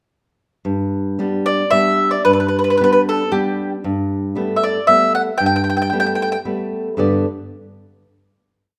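The bowl-back mandolin leads this brief, sunny Italian serenade, its warm, picked double strings sitting up front as it spins a motif-based melody of call phrases between 1.5 and 6.4 seconds. Beneath it, a flamenco guitar enters at 0.6 seconds with a dark, fingerpicked accompaniment, mixing bass notes and chord figures into an oompah pattern, with finger squeaks audible on its strings. The lively piece moves at 114 BPM in 3/4 with a light swing, staying in G major as the harmony shifts from G to Gadd9. A moderate recital hall reverb gives both instruments a natural sense of space. A final chord arrives at 7.0 seconds, and the guitar stops at 7.3 seconds as this complete little piece rings out to its close.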